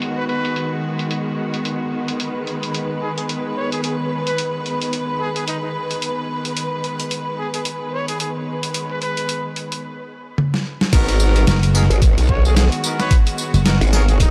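Lightly reverberant and swaggering, this glitch hop excerpt opens on a rich, biting symphonic string section holding sustained G#m7 chords with sidechain pumping, over a compressed, pitched-down boom bap sampler-style kit whose hi-hat, snare, toms, tambourine and crash sit behind low-pass filters, while a breathy, whispered trumpet carries the melody through delay. A filter sweep on the drums leads into a fill, and at 10.9 seconds the drop lands with a knocking, tape-warm electronic kick, a saturated, wobbling growl bass with chorus, and bright jazz-style horn stabs roughened by 12-bit sampler grit, sidechain pumping and delay. A punchy slap bass with an envelope filter joins at 11.5 seconds, adding amped bite to the low end.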